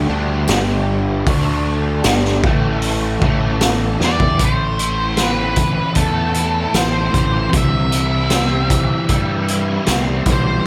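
This dark, mysterious psychedelic rock piece opens on a mellow vintage combo organ holding sustained chords with light vibrato and subtle chorus in the background, while a bright, double-tracked overdriven semi-hollow guitar plays a riff through a rotary speaker up front, alongside a punchy, fingered fuzz bass. At 0.5 seconds a raw garage drum kit joins with a boomy kick, a medium-tuned snare and hi-hat, all gritty and saturated with a rolled-off top. A very quiet, jingly tambourine enters at the same moment. At a slow 77 BPM in A minor, the opening moves through G5, D5, G5 and A5. A drum fill at 4.0 seconds brings in an octave-fuzz lead guitar melody with distortion and tape echo. The organ drops out at 4.4 seconds as the second section settles on Am and then C, and light reverb and small room ambience surround the band until this cut from a longer piece ends.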